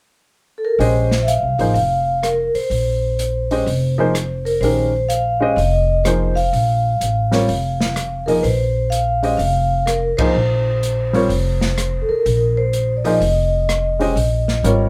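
Modal jazz in Bb dorian at 126 BPM with a swung 4/4 feel, intense and hypnotic, this excerpt from a longer piece sits on a single Bb9sus4 chord as the vibraphone, played with medium mallets and a fast motor vibrato, carries a ringing, metallic melody from 0.6 seconds. A baby grand piano with audible action noise and short sustain comps alongside a woody, pizzicato upright bass on steel strings, both up front, while an open jazz kit with dark cymbals, a boomy kick, hi-hat, ride, rim click and snare sits lower in the mix. The band plays live in one room with light reverb and hits a shared accent at 10.1 seconds.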